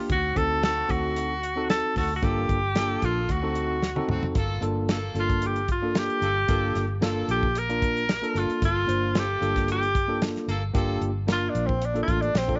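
Brooding and mournful, this straight-eighth soul blues excerpt in G minor moves at 113 BPM over a D7b9 to Gm9 progression, with a warm tenor saxophone singing the melody up front in a distant, roomy subtone with vibrato and soloing from 4.4 seconds, a clean tine electric piano sounding through its built-in speakers, a horn section holding sustained chords in the background, a dark, round, foam-muted fingered electric bass, and a dry, smooth soul drum kit with a tight kick, whose fill at 3.8 seconds leads into the solo, heard in a small, lightly reverberant room.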